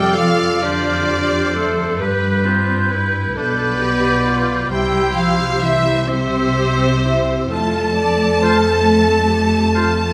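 A slow, rubato 6/8 at 44 BPM carries this hopeful, uplifting cinematic excerpt in F major, where a lush violin section sings the melody over sustained chords from a clear, tight French horn section, with a second, very quiet violin line, a clear solo oboe, a bright clarinet and an airy, distant flute section weaving counter-lines. Expressive violas with portamento fill the accompaniment, mellow harp arpeggios ring in the background, and rich cellos and double basses anchor the bass as the harmony moves from Dm/F through G7 and C to F at 7.5 seconds. A barely audible touch of timpani sounds only in the opening 0.6 seconds, and moderate scoring-stage reverb gives the orchestra a spacious bloom.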